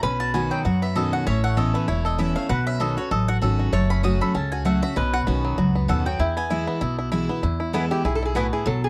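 Virtuosic and joyful, this brisk swung bluegrass excerpt in E major at 194 BPM features a bright, woody mandolin solo until 7.4 seconds, when a nasal, metallic lap resonator guitar played with a steel bar takes over, all over fresh-stringed, full-bodied picked acoustic guitar up front, twangy fingerpicked banjo arpeggios and a thumpy pizzicato upright bass, caught in a dry, close 1970s-style studio sound with light reverb.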